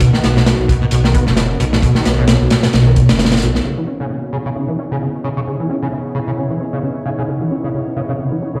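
Heard through a big sound system in a bare room with a large studio reverb, this funky, swaggering breakbeat fragment in C# dorian struts at 132 BPM with a swung sixteenth feel. A crunchy, saturated acoustic kit with a tight kick and gritty, rolled-off top sits up front beside a rumbling, detuned saw bass over a Bmaj7 chord, until both drop out at 3.6 seconds. A rubbery, resonant acid bass riff with dub echo and a moody, warbling vintage pad with sidechain pumping sound from the very start, and from 3.6 seconds they carry on alone over C#m9 until 8.6 seconds.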